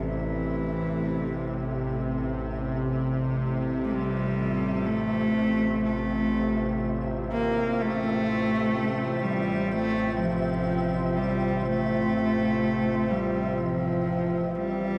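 This unsettling, desolate dark ambient drone opens at once on a tense, string-like drone sitting low and up front, its detuned sawtooth tone edged with a noise layer and a touch of vibrato. A single cello plays the melody close and intimate, bowed sul tasto with an airy, soft attack and light vibrato, trailed by analog delay. Alongside it, a deep, moody pad fades in across the full 15 seconds, its detuned chords thickened by chorus and a sub octave. Far in the background, a grainy, flickering granular texture also fades in on a single high pitch, washed in its own reverb. The harmony shifts once, at 3.9 seconds, and the whole echo-heavy mix sits in a moderate spring reverb, tuned slightly low to A4 = 437 Hz, in a brief cut from a longer piece.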